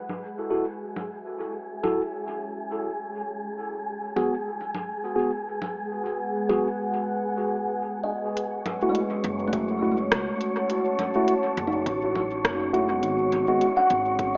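A dark, detuned pad with chorus and a breathy, wind-like tuned noise layer open this deep, meditative ambient dub excerpt, the pad passing through a filter sweep as congas, smooth low-passed hats and rim clicks drift in with dub echo under a clean, up-front tine electric piano playing mellow stabs. A woody, hollow-boxed kalimba begins ringing arpeggios at 8.0 seconds, followed by a pizzicato upright bass at 9.2 seconds and a punchy, layered electronic kick. The whole mix has a thin AM-radio colour, set in springy digital ambience.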